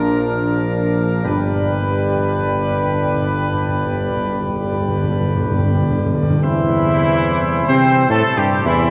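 A full, up-front chamber organ principal chorus with audible chiff anchors this regal, triumphant classical fanfare in triple metre, while a mellow, vintage trumpet section carries the melody with light vibrato over a bright trombone section, a dark, soft-edged French horn section and a rounded solo tuba on the bass. Close, dry timpani on medium mallets sound a fill from 1.3 to 6.4 s before the harmony moves into a second section at 6.4 s. The whole short excerpt sits in a cavernous cathedral reverb and carries the warbly pitch drift of worn old cassette tape.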